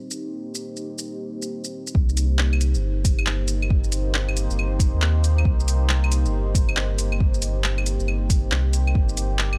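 Future garage at 137 BPM in C minor, this excerpt moves with a nocturnal, ghostly mood and a 16th-note swing of 63%. A deep, moody ambient pad holds sustained chords from the start, its detuned sawtooth unison blurred by chorus and its own reverb, with a slow attack and long release, while sidechain pumping makes it breathe. A deep house drum kit of claves, handclaps, metallic hi-hat and shaker enters almost at once, tape-warm and set in studio reverb. At 1.9 s a round, sine-based sub bass arrives up front alongside a deep electronic kick, the bass also pumping against the beat. The harmony rests on Cm7 before turning to Gsus2 at 9.0 s, and the kick drops out at 9.1 s as the other parts carry on.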